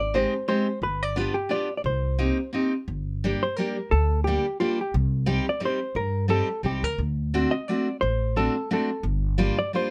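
Close, detailed microphones and light reverb frame this bittersweet, nostalgic musette waltz with a swung, rubato lilt, as a dark, clean, compressed hollow-body electric guitar carries the melody up front over a fresh-stringed, picked dreadnought acoustic guitar and a woody pizzicato upright bass, the opening Abmaj7, G7 and Cm7 chords giving way to Gm, Cm and D7 in the second section.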